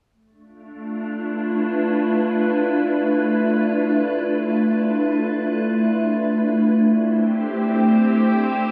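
A glassy, ethereal FM pad with ensemble chorus and built-in reverb sits up front, holding slow-attack sustained chords from Dm69 to C6 in this spacious, reflective ambient fragment, its long release melting into a lush hall reverb that leaves the whole mix dreamy and soaked.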